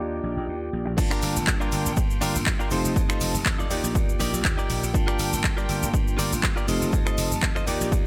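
A 121 BPM groove with a light 16th-note swing drives this sensual, nostalgic excerpt of filtered disco house in G minor, which cycles through Ebmaj7, Gm7 and F7. For the first second, a low-pass-filtered bed of sidechain-pumped instruments plays alone: a bell-like tine electric piano with phaser, a clean, compressed direct-recorded electric guitar picking a riff, a growly, punchy slap bass with tube saturation, and a background violin section holding smooth, reedy chords with light vibrato and vintage 12-bit sampler grit. At 1.0 seconds the drop arrives with a punchy, tape-touched electronic kick sitting up front in studio reverb. A house kit joins it, bringing crash cymbal, finger snaps, handclaps, shaker and warm hi-hats, all pumping against the kick. A very quiet, close egg shaker with group handclap adds an acoustic touch, while a digital ambience surrounds the whole mix, and the drums stop at 8.0 seconds.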